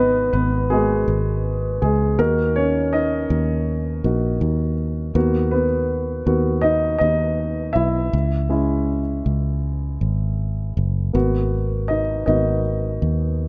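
Longing and melancholic, this pop passage in G# minor moves at 81 BPM in a straight 4/4, drifting through G#m7, D#m, Bmaj7 and C#m before settling back on G#m7. A polished, present baby grand piano sits up front and takes the spotlight across the full 13.5 seconds, while a round, punchy, foam-muted electric bass holds down the low end with a direct, dark tone. Light reverb and a small-room ambience wrap the two in a dark, warm production, tuned slightly sharp at A4 = 443 Hz and cut from a longer piece.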